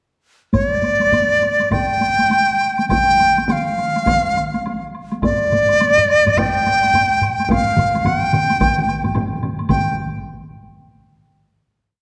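This is a whole piece of Japanese traditional taiko drum ensemble music, driving and ceremonial, in 4/4 with a swung sixteenth-note feel, gathering speed from about 101 to 115 BPM. A bright, up-front dizi carries the modal melody from 0.5 seconds, its bamboo tone edged by a buzzing membrane, with vibrato, tongued notes and expressive ornaments sitting high between D5 and G5. Beneath it, several taiko ensembles struck with heavy sticks pound out repeating patterns and taiko phrases: one rings in a live room, another sounds close and dry in the background, a third is compressed and saturated, and a fourth, joining at 2.9 seconds, adds a small-room pattern further back. A woody, close woodblock ticks a repeating pattern quietly behind the drums. The whole performance sits in a wet concert hall reverb, and after the single main section the piece closes on a final note held from 9.7 seconds.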